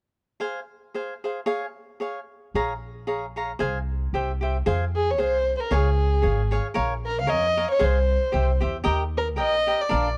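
Lightly swung eighths in a brisk 2/4 drive this dramatic, passionate mariachi-style Mexican folk fragment, cut from a longer piece. A crisp, mellow, picked cavaquinho opens the accompaniment at 0.4 seconds, a woody pizzicato upright bass with steel strings joins at 2.5 seconds, and a single bowed violin with a boxy tone and light vibrato takes the melody from 5.0 seconds as the music moves into its second section. All three sit up front in a dry, close, 1970s-style studio sound with a small-room ambience.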